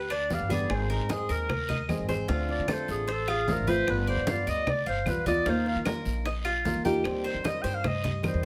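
A danceable 4/4 groove at 151 BPM in C minor drives this short cut from a Cuban son and guajira piece, with ringing low-tuned congas, round bongos struck with hard hands, dry woody claves and a raspy, saturated guiro setting the pulse while a growly, thumpy pizzicato upright bass anchors the low end. Over a picked, metallic Cuban tres playing arpeggios on double strings and a fingerpicked flamenco guitar with fresh strings and audible finger squeak, a clear, classical-style clarinet carries the solo melody up front yet with a distant, roomy quality. The harmony moves from G through Abadd9, Dm7 and G7 to Ebsus2 and Cm/Eb, all set in a moderate studio reverb.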